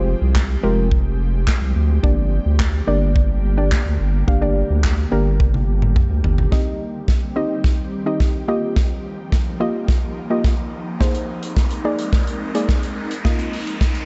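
A deep, saturated sub bass sits up front for the first 6.5 seconds of this euphoric, upbeat dance-pop excerpt at 107 BPM, pumping alongside a soft, round pluck and an ethereal, detuned pad, while a punchy, polished acoustic drum kit with handclaps and toms drives fills into a build-up from 6.5 seconds that an electronic riser joins at 8.9 seconds, inside a dark studio ambience.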